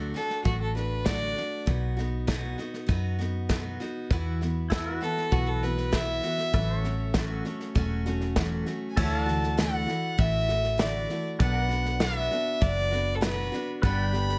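This nostalgic, down-home honky-tonk and classic country piece in D major, at 99 BPM, opens with a bright, full-bodied picked acoustic guitar up front, finger squeak and all, over a dark, round, foam-muted fingered electric bass and a polished, airy drum kit with a punchy kick, medium-tuned snare, hi-hat and crash. A rich, smooth fiddle carries the melody with light vibrato, soloing through the first 9.0 seconds before the music moves into a new section. At 4.7 seconds a clean, twangy pedal steel guitar slides in with sustained chords, and close, detailed microphones with light reverb keep the sound intimate.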